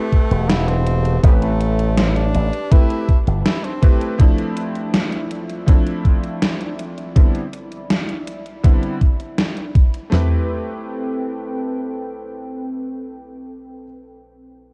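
Vaporwave at 81 BPM in A minor, melancholic and nostalgic, with an edgy tenor saxophone carrying a gritty, tape-echoed melody with light vibrato until 4.2 s over a bright, clangy electric grand piano with lush chorus, a warbling lo-fi tape-like pad with slow attack, a punchy slap bass with an envelope filter that stops at 3.4 s, and two up-front drum machines, one detuned and thumpy, the other an overdriven 80s kit with gated reverb snare that stops at 10.1 s, all cut from a longer piece with dark cassette-tape production and faint mains hum as the chords move from Am9 through Dm9 and Cmaj9 back to Am9.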